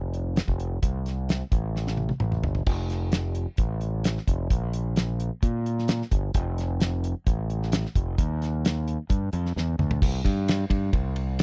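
A growling fingered electric bass with overdrive opens this swaggering, driving classic rock excerpt, its bright, punchy tone sitting up front as it moves between F1 and Bb2. Beside it, a damped 70s drum kit enters at 0.1 seconds at a straight 131 BPM in 4/4, with a fat snare, a tight kick and dark cymbals across crash, hi-hat, ride and toms. Drum fills arrive at 1.8 seconds and again at 9.6 seconds, each marking a shift into a new section of this short cut from a longer piece. The sound is dry and close, in the manner of a 1970s studio, with little reverb, so the polished, airy kit and the direct, amped bass both feel immediate and present.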